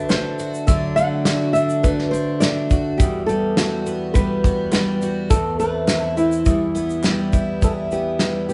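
Up front, a shimmering, octave-doubled twelve-string acoustic guitar rings out beside a loose indie drum kit with a tight kick and medium-tuned snare, while a dark, fingerpicked nylon-string guitar carries the melody with audible finger squeak, a very quiet steel-string guitar adds arpeggios and crisp, very quiet group handclaps join in, in this reflective, wistful acoustic pop excerpt captured as a band playing live in one room.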